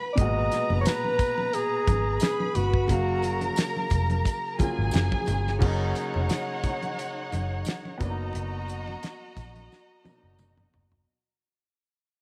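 Lush and warm, this slice of 1970s-style soul moves with a gentle swing in four. A mellow alto saxophone carries the melody up front, its smooth top, vibrato and scooped notes giving a jazz-style solo voice until it stops at 3.9 seconds. Beneath it a grand piano supplies accompaniment, while a distant, bowed string section plays an expressive second line with soft attack and portamento. A dark, round, foam-muted electric bass sits low, and a dry acoustic drum kit with a fat snare and tight kick stays up front, joined by very quiet, bright congas and a jingly tambourine. Light studio reverb surrounds the sound, which fades out from 5.6 seconds, and a drum fill arrives at 9.7 seconds.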